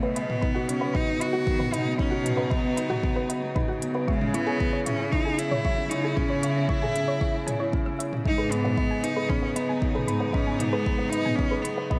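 A close, focused solo cello with vibrato carries the tape-echoed melody up front in this cinematic, intimate piano and strings electronica, over a felt-muted upright piano riff with audible action noise, sustained chords from a distant string quartet, a chamber cello section with gut-string tone holding the bass in the background until 11.3 seconds, a soft, round detuned pluck playing chorused arpeggios with sidechain pumping, crisp hi-hats and toms from an electronic kit entering at 0.2 seconds, and a deep, layered kick up front from 0.4 seconds, all set in light reverb and small room ambience.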